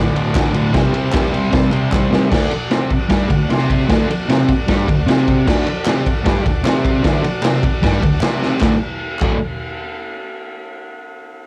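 A straight 4/4 beat drives this swaggering, rowdy garage rock snippet, where a punchy, gritty drum kit with dark cymbals and a fuzzed-out, double-tracked guitar riff sit up front, a buzzy combo organ holds sustained chords with light vibrato in the background and adds a fill at 1.1 s, and very quiet, hollow group handclaps come and go, returning at 5.9 s, while the drums, guitar and organ all carry the tape grain of a home cassette recording.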